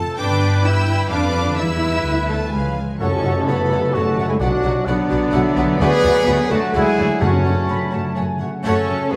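Wrapped in a wet scoring-stage reverb, this cut from a heroic adventure film score moves at 128 BPM in 3/4 with a determined, swashbuckling drive. Warm horns hold sustained chords while tight trumpet stabs, ringing harp arpeggios and focused double basses support two bowed violin sections: a distant chamber group carries the melody and a lush symphonic group plays a second line, with expressive violas and smooth cellos filling out the strings. At 3.0 s the music turns to F# minor with an ensemble accent, bringing in a dark tam-tam, a punchy clarinet, a classical-style cor anglais, pure flutes and soft-edged trombones, and the round timpani sounds an F#2 at 7.2 s.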